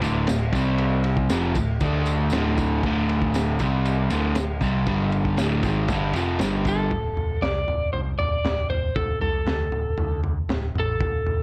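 A straight, steady 4/4 beat from a crunchy breakbeat drum kit drives this menacing, raw garage rock excerpt, with tight kick, high-tuned snare, dark ride cymbal and toms all carrying a gritty, saturated, vintage sampler texture and a rolled-off top. Beneath it, an overdriven picked electric bass sits low, its tone round and punchy, while a jingly tambourine stays in the background until about 6.8 seconds. Up front, a bright, double-tracked overdriven guitar hammers out the riff over power chords and D minor until 6.9 seconds. At 6.7 seconds an electric slide guitar takes over the melody, slightly broken-up and compressed, played with fingerpicks and dressed in plate reverb and analog delay. The whole piece has the light reverb and character of a cassette tape recording, and it is cut from a longer piece.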